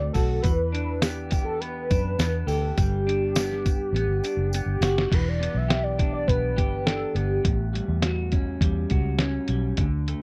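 Sunny and nostalgic, this short cut of indie and bedroom pop has a dry, close studio sound with a 1970s flavour. A velvety synth lead carries the melody, its detuned sawtooth and triangle layers softened by analog chorus and vibrato, before it drops out at 7.7 seconds. Beneath it, an electric guitar through a small old amp plays bright, twangy, slightly broken-up accompaniment, bathed in lush chorus and a warbly pitch drift. Up front sit a dark, round, foam-muted fingered bass and a compressed, muffled sampler-style drum kit with a thumpy kick, which plays a fill from 3.9 to 5.1 seconds. A jingly tambourine stays in the background through the first half, while the chords move from Em7 and Gmaj7 toward a closing A13.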